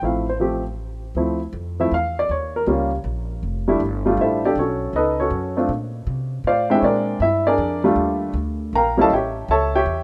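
Swinging eighth notes in a brisk 3/4 at 159 BPM give this cool jazz piano trio fragment its lilt, set in D minor and tuned a touch low to A4 = 438 Hz. A baby grand carries the melody across the full ten seconds, ranging from F3 to Bb5 with an intimate, natural tone, short sustain and audible action noise that keeps it close and up front. Beneath it, a woody, thumpy upright bass on steel strings is plucked between F1 and C3, sitting well under the piano in level. The harmony moves from a rootless Dm7 through Eb7(no3), Fmaj13, B9 and Bbmaj9 to Ebmaj9#11, landing on A7 at 9.1 seconds, with a new passage beginning at 1.2 seconds. Studio reverb surrounds a rough home-demo mix, and the clip is cut from a longer piece.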